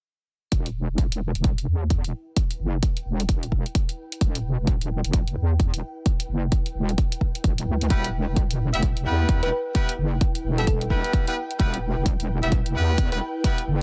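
Aggressive and swaggering, this bass house cut runs at 130 BPM in 4/4 with a 61% swing on the sixteenths, sitting in E minor on a single Em chord with tuning set to A4 = 435 Hz. A punchy, layered electronic kick sits up front alongside a produced electronic hi-hat, both re-recorded in a small room, while a heavy wobble bass built from detuned square and sine waves growls between E1 and E2, saturated with overdrive and chorus and pumping with sidechain compression. From 2.1 seconds an ethereal, airy pad of detuned sawtooth and triangle voices fades in high above, washed in ensemble chorus and its own reverb and breathing with the same sidechain pulse. At 7.9 seconds a brilliant, tight horn section arrives with jazz-style stabs doubled in octaves, carrying vibrato and a trailing delay. A round, tine-like thumb-piano pluck then adds a gentle, mellow melody between A4 and B4 in the background, coated in analog chorus and delay, while the mix as a whole stays dry and close.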